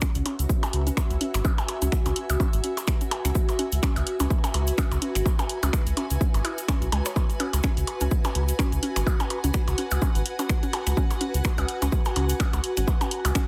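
Minimal techno at 126 BPM in C# minor, sparse and quirky, with a swung 16th-note feel over a single C#m chord for this 13.5-second excerpt cut from a longer piece. An overdriven, punchy electronic kick sits up front beside a round, deep analog bass entering at 0.2 seconds, while a tape-warm analog drum machine adds finger snaps and hi-hat, a grainy cabasa sits in the background, and percussion blips with delay arrive at 0.3 seconds. A hollow, bouncy square-wave pluck riff with chorus and tape echo sits in the background, and a cloudy, evolving granular pad with slow attack and built-in reverb joins the pluck and bass in sidechain pumping, all in a digital ambience.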